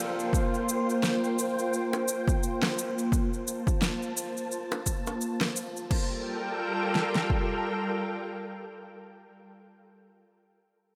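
A silky, vintage string machine opens at 0.0 s with chorused sustained chords under a filter sweep, joined by a relaxed, wistful sunset chillout groove at 86 BPM with swung 16ths, where two overdriven, up-front deep house kits bring a punchy kick, fat snare, crash cymbal and shaker while tight, high-tuned bongos sit very quietly beneath, all bathed in a dreamy plate reverb as the harmony moves from C7sus4 to Gm7 at 5.9 s and the kick and snare fall away at 7.5 s, leaving the strings to ring on in this fragment of a longer piece.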